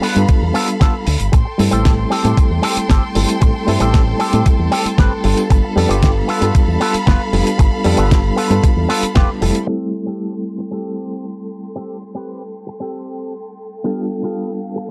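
Sleek and cosmic, this nu-disco cut in A minor moves at 115 BPM over G9 and Am7 chords, with a thumpy, up-front electronic kick and a damped 70s kit of hi-hat and fat snare with a rolled-off top, under a fingered electric bass with an envelope filter, tube saturation and sidechain pumping. A barky, reedy electric piano, lightly overdriven with fast tremolo and analog delay, sits up front, while a clean, compressed guitar riff with envelope filter and chorus plays alongside a distant, bowed string section that holds sustained chords with vibrato and portamento. After a band accent at 9.2 seconds the rhythm section falls away by 9.7 seconds, leaving keys, guitar and strings under a filter sweep, all in a dry, gritty hardware sound with studio reverb.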